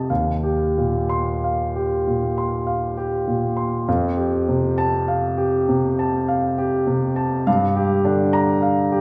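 A warm grand piano opens alone, playing an Eb6/9 chord that sets a nocturnal, wistful mood for this impressionist classical solo. The tempo drifts slowly in rubato around 45 to 52 BPM in 3/4 time, giving the phrases a free, unhurried lilt. The harmony moves to Fadd9 at 3.9 seconds and arrives at Gm7 at 7.5 seconds, colours that feel warm and open. The piano sits up front with long sustain, spanning Eb2 to C6, so deep bass tones ring beneath the upper notes. A wet recital hall reverb with a 1.8-second decay surrounds the instrument, lending the sense of a church or concert hall. The nine seconds heard here are cut from a longer piece.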